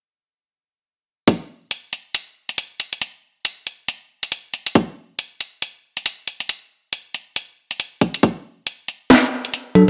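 Deep dubstep excerpt with a cavernous, meditative mood and a swung, half-time feel, opening at 1.3 s with a tight, tape-warm electronic kick in brief bursts and a layered garage kit whose cracking snare and hi-hat sit up front in studio reverb. The harmony stays open until a D chord arrives at 8.2 s, all set in a moderate spring reverb with digital ambience. At 9.8 s a bell-like tine electric piano lands a single bright, clean, direct stab.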